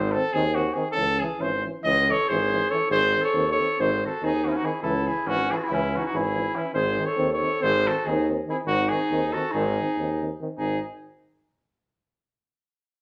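A punchy, mellow trumpet leads over a distant tuba bass from the start of this restless, fiery Balkan folk excerpt in 9/8, with a soft-attacked, very quiet euphonium and a warm trombone, which shares the tuba's light vibrato, filling in the accompaniment, before a roomy clarinet adds a second line at 2.1 seconds, the whole band playing live together in one room with a wet, large studio reverb.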